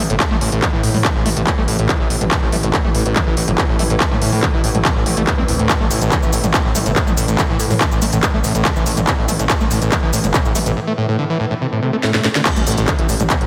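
Relentless and industrial, this driving peak-time techno piece, cut from a longer track, runs at 142 BPM in a straight 4/4 in A minor, anchored on an A5 chord. A squelchy, resonant overdriven acid bass carries the riff, its distorted sawtooth tone treated with subtle chorus, delay and sidechain pumping. Beneath it, a gritty driven synth bass sits in the background, also pumping. A very quiet swarming drone, detuned and granular, holds a tense layer underneath. The heavy electronic kick and an up-front techno kit share a tape-warm, small-room character: the kit brings a cracking snare, smooth hats, handclaps, shaker, toms and crash, with sidechain pumping on its hats, toms, percussion and cymbals. Near the end, a drum fill and a very quiet swell lead into a drop at 12.5 seconds marked by an impact, and the mix is soaked in a lush hall reverb that gives it a dreamy cast.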